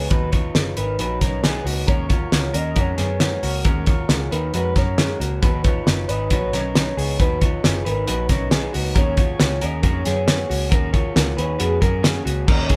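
This wistful, restless passage of jangly indie pop opens with a velvety synth lead carrying the melody from the background, its chorused, vibrato-tinged sawtooth and triangle tone sitting over two slightly broken-up, lo-fi electric guitars played through a small old amp: one picked accompaniment, the other fingered arpeggios, compressed and tucked further back. A foam-muted vintage bass adds a round, dark low end, and at 0.1 seconds a cloth-damped drum kit joins up front with a fat snare, tight kick, hi-hat and dark crash. The band plays live in one room with moderate reverb, moving between Bsus2 and Gbadd9 chords in a straight 4/4 until the cut at 12.8 seconds.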